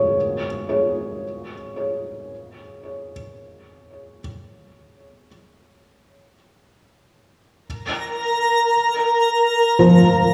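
A felt-muted upright piano opens this serene ambient passage in free time, its arpeggios soft and intimate, with audible action noise, short sustain and a touch of tape echo. At 8.0 seconds a twinkling granular texture enters up front with a slow attack and octave-up shimmer, sparkling and sustained through its own built-in reverb. The chords move from Ab7sus4 to Bb5, and the whole brief fragment, cut from a longer piece, sits in a wet concert hall reverb.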